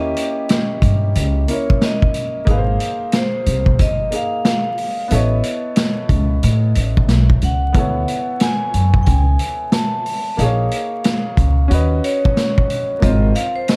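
Nocturnal and smoky, this short jazz-hop excerpt at 91 BPM swings in 4/4 as a dry, ringing vibraphone with its motor off carries the melody over a clear, long-sustaining upright piano. A thumpy, gut-strung pizzicato upright bass sits up front, stopping at 13.3 s, while a gritty, saturated vintage kit with a tight kick and rolled-off top enters at 0.2 s, all wrapped in a dark, small-room sound with vinyl crackle over jazzy chords moving from Eb7b9 through Dmaj9 to Abadd9.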